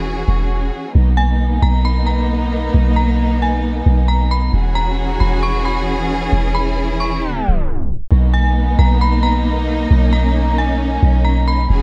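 A deep, round 808-style bass sits up front throughout this atmospheric cloud-rap clip, its sine-like tone striking fast and then decaying into a soft, dark low end. Beneath a half-time hip hop feel, a lush symphonic string section holds sustained bowed chords, its ensemble sound expressive with vibrato and portamento. Above them, an eerie, detuned synth bell carries the melody in a high register, its inharmonic FM tone shimmering through chorus, tremolo, phaser and tape echo. The harmony drifts between E69 and Bmaj7 before a tape stop drags the sound down from 7.2 to 8.1 seconds, and the music then settles on a Bmaj9 chord. The mix is dry and close, giving the whole passage a floating, blissful mood, and it is clearly cut from a longer piece.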